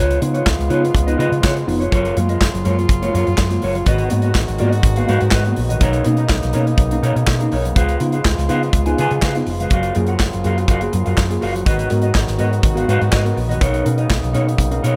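Glamorous and driving, this 15-second disco cut at 123 BPM in G# dorian rides a cycling C#7, F#maj7, G#m7, Bmaj9 progression, with an up-front, tight-kicked studio drum kit with handclaps, hi-hat and snare, a dark, round, punchy hollow-body fingered bass, a mellow clean guitar bathed in spring reverb, a worn, slightly out-of-tune tine electric piano lightly overdriven through its built-in speakers, and a clear French horn section holding sustained chords with light vibrato, all in a dry, close mix.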